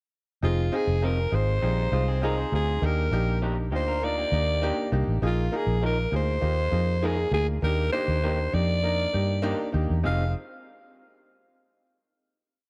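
A growling alto saxophone leads this short, passionate soul piece, its raspy, gritty tone and light vibrato carrying a motif-based melody up front over a dark, warm production with little reverb. A foam-muted electric bass plays a round, punchy, syncopated line with chromatic approach notes, while a bright, slightly detuned upright piano with audible action noise keeps a close-voiced eighth-note chord rhythm. Two lo-fi electric guitars through a small old amp sit in the background, one chopping on the backbeat from 1.0 s and the other adding chorused fills in sixths between 1.6 and 5.0 s, before the whole piece settles on a final chord at 10.0 s.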